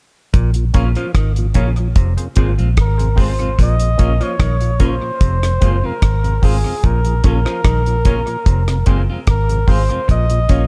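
A straight 74 BPM 4/4 roots reggae groove in Bb minor, cut from a longer piece and serious and meditative in mood, rests on a dry, up-front drum kit with a tight kick, hi-hat and rim click and a dark, round, foam-muted electric bass, while a stringy clav plays arpeggios, a key-clicking tonewheel organ turns through a slow rotary speaker with dub echo, a clean picked electric guitar carries dub echo too, and hollow, percussive organ stabs shimmer with chorus and phaser in the background over alternating Bbm and Fm chords, until a warm solo flugelhorn with light vibrato and scooped notes enters at 2.8 seconds, its melody trailing dub echo.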